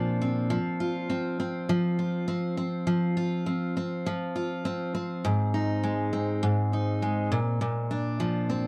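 Pop excerpt at 101 BPM with a gentle 16th-note swing, where a lone picked steel-string acoustic guitar, full-bodied and up front with a touch of tape echo, moves carefree and easy-going through Bbadd9, F5 and Ab chords across about 8.7 seconds in a dark, lightly reverberant production.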